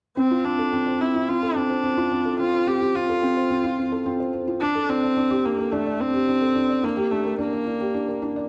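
A straight 4/4 pulse at 108 BPM carries this moving, cinematic electronica passage in D minor, cut from a longer piece, with chords moving from Dm7 to A7sus4 at 4.6 seconds and then to Gm at 6.8 seconds. A felt-muted upright piano plays a soft, dark riff up front, its thick felt and audible action noise giving it an intimate feel. A single bowed viola, nasal and smooth with vibrato and delay, carries the melody alongside it from 0.2 to 8.5 seconds, all within a wet echo chamber.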